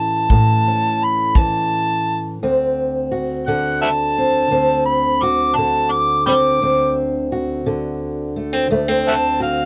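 Swaggering and laid-back, this excerpt of dark acoustic country blues in 12/8 puts a gritty, overdriven, amplified harmonica solo up front, with tongue slaps, scooped notes and light vibrato in a jazz style, over a woody, boxy fingerpicked ladder-braced guitar on old strings, while a punchy kick drum played with brushes sounds only from 0.3 to 1.5 seconds, the chords move from A7 to D7 at 2.4 seconds, and a moderate booth ambience frames the sound.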